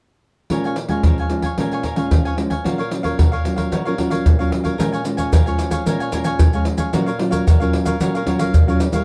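A tight surdo, pandeiro and maracas set a straight samba groove in 4/4, sitting up front in a small-room acoustic sound and standing as the loudest part of the mix. Over them, a bright, crisp picked cavaquinho and a thumb-plucked classical nylon-string guitar carry the accompaniment together from 0.5 s to 9.0 s, the guitar holding the lower register and the cavaquinho placed higher and quieter. The harmony moves between Bbm7 and Gbmaj7/Bb, and the same pair of chords returns when the second section begins at 4.8 s. The mood blends samba and choro into something nostalgic and bittersweet, framed by a moderate studio reverb and a dark, warm production. This short passage is cut from a longer piece.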